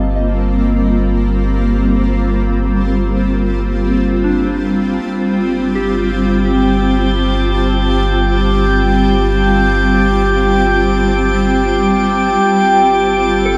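A blurred, granular cloud pad holds sustained chords in G minor over a round sub bass note, while a soft FM synth bell fades in from the start, tracing gentle arpeggios in the background through chorus, phaser, tape echo and shimmer reverb. At 5.0 seconds the harmony moves from Cm7/G to G9sus4, and shortly after, at 5.8 seconds, a glassy texture of drifting overtones enters up front, bathed in chorus and shimmer. The mood of this free-time ambient excerpt is serene and spacious, with an echo-heavy mix and a moderate plate reverb.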